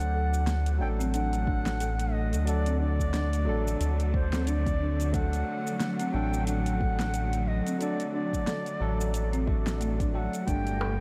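A dreamy, reverb-soaked mix sets this hypnotic, mystical stretch of organic downtempo, cut from a longer piece and moving at 90 BPM in D major with a gentle 16th-note swing. An airy, reedy bansuri carries the melody with vibrato and a soft attack, its close-miked tone trailed by delay, while a bell-like tine electric piano accompanies with a clean, bright tone roughened by 12-bit sampler grit, sidechain pumping and analog delay. A smooth, bowed string section holds sustained chords in the background, and a round, dark analog bass sits up front with tube saturation, both breathing with the same pumping. A woody marimba with medium mallets adds dry, rustic arpeggios through analog delay, over a deep house kit of fat snare, metallic hats and shaker, joined at 1.5 seconds by a deep, tape-touched electronic kick. The harmony rests on D until a shift to Gmadd9 at 10.5 seconds, and in the final moments a very quiet twinkling granular texture and a crisp metal-shell darbuka appear.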